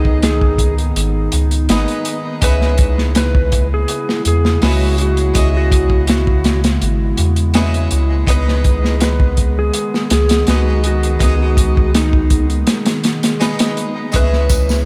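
A dreamy, reverb-soaked mix set in a moderate cathedral space opens this hypnotic, dark trip hop excerpt at 82 BPM in C# minor, moving between G#m/C# and C#m7. A clean lap steel guitar carries the melody with lush chorus and tape echo over a brilliant Italian-style harpsichord with harmonic tremolo, a warbly, nostalgic tape-like pad with 12-bit sampler grit, and a deep, round dub sub bass sitting up front. A crunchy, saturated breakbeat kit with a punchy kick drives the groove from 0.1 seconds, and a tambourine appears only at 14.1 seconds after a break that begins at 12.7 seconds.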